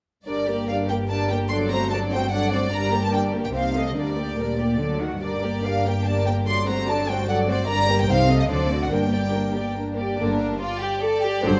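Set in a wet recital hall with a soft, rounded top end, this stormy, restless classical-period string orchestra movement in quick triple time moves with a rubato feel, cut from a longer piece. The floating first violins carry the melody high above an up-front, smooth-topped second violin line, while woody, lush violas with vibrato fill the middle and a distant cello section joins dark, close double basses on the bass, every section bowed sul tasto. Minor-key harmony circles through dominant and diminished chords before a new section arrives at 10.2 seconds.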